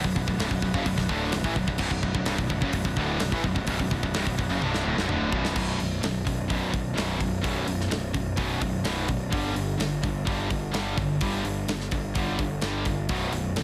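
A dense, heavily limited modern mix with light reverb carries this dark, epic heavy metal excerpt, where a growly fuzz bass and a tight, up-front drum kit with bright cymbals drive beneath two bright, distorted guitar riffs set in the background, while a very quiet double-tracked scooped guitar and a faint tremulant oboe-stop pipe organ holding sustained chords both drop out as a drum fill starting at 4.6 seconds ends, just as the second section begins at 5.6 seconds.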